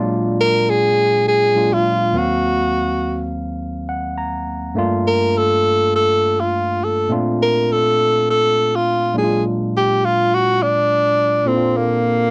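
Smooth and lush, this short soul excerpt moves in 4/4 with a light swing on the sixteenths and a dry, close sound like a 1970s studio session. A barky tine electric piano carries the accompaniment from the first moment, bright and lightly overdriven through a combo amp, sitting up front as it works through rich chords such as Bb7b13, Ebm6 and Gm9. At 0.4 seconds a breathy tenor saxophone takes the melody in a jazz style, its tone warm with light vibrato, scooped notes and a smooth top, and it sits a little louder than the keys. Between 3.6 and 4.8 seconds the electric piano slips in a short fill beneath the horn. The harmony settles on a Bbmaj9 near the end of the cut, with both parts still playing when it breaks off.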